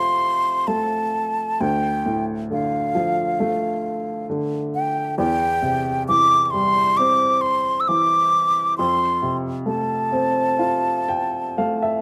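A wooden flute and an upright piano begin together, opening a nostalgic, tender Celtic slow air at around 66 BPM in 4/4, played with a loose, rubato feel. The flute carries the melody in its upper register, its airy tone marked by gentle vibrato, a crisp attack and a touch of slapback echo that trails each phrase. Beneath it, the upright piano offers a woody, natural accompaniment that spans deep bass notes up well into the treble, sitting a little below the flute in level while both remain up front. The harmony moves from F to D minor, then to C over E, and settles back on F. Near the close, at 10.6 seconds, the piano adds a brief fill, and the twelve-second passage, cut from a longer piece, stops there. Recorded outdoors with little reverb, the sound is dry and intimate, with a warm, unhurried calm.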